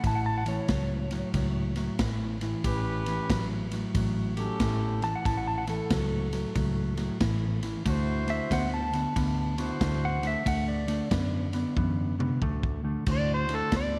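A clean, compressed lap steel guitar leads this laid-back, rollicking electric blues shuffle at 92 BPM in D major, its slide solo full of volume swells over a dark, fingered electric guitar riff and a round, foam-muted vintage bass moving from A7 to D9. An airy, polished big-band drum kit swings up front with a punchy kick, ride and crash, while a mellow horn section adds soft-attack stabs with light vibrato from 2.6 seconds, and the drums play a fill at 11.8 seconds. At 13.1 seconds a gritty, overdriven harmonica steps up front with tongue slaps and scooped notes, all in a light, small-room ambience.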